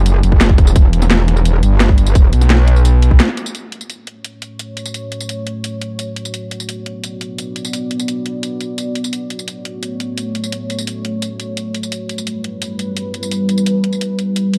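Dark technical drum and bass at 172 BPM in F# phrygian, this futuristic, aggressive excerpt opens on a drop where a metallic, distorted FM wobble bass with chorus and sidechain pumping and a tight, overdriven electronic kick drive hard up front until a band accent at 3.2 seconds, while the layered kit of cracking snare, bright hats and tambourine carries on to 14.6 seconds alongside a deep, moody sawtooth pad of detuned unison chords that enters slowly at 4.4 seconds with chorus and built-in reverb, moving through F#m, Bm and Em in a warm production with digital ambience.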